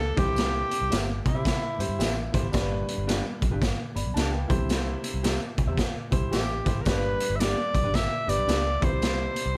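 Uptempo 1960s-style soul with a joyful, danceable swing at 111 BPM, as a breathy, whispered tenor saxophone with tape echo sings the melody up front in two phrases (0.0-2.3 and 6.3-9.6 s) over a gritty, saturated garage drum kit with a boomy kick, a round, punchy muted electric bass, a woody upright piano, a slightly broken-up guitar with warbly pitch drift stabbing in the background, jingly distant tambourine and very quiet high-tuned congas, all moving between C and G in a light reverb.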